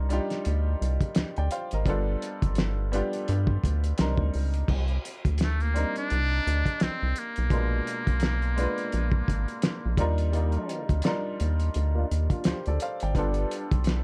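A clear, slightly worn grand piano and a rubbery, hollow square-wave bass open this soulful, smooth neo-soul excerpt, joined almost at once by a cloth-damped drum kit with a fat snare, tight kick and muffled, dark cymbals. The kit sits up front with a saturated, gritty, lo-fi small-room character, while the bouncy, resonant bass carries a fast-attack filter pluck and sits prominently in the mix, the piano supplying chords beneath a lilting swung groove. At 5.4 seconds a trumpet with a metal mute takes the melody, buzzy and thin yet breathy and intimate, with vibrato, scooped notes and a slapback echo. From 10.3 seconds a mellow trombone section adds jazz-style stabs with light vibrato and its own slapback echo. The production is dark and close, with little reverb, and the harmony circles through lush major-ninth and dominant-seventh colours.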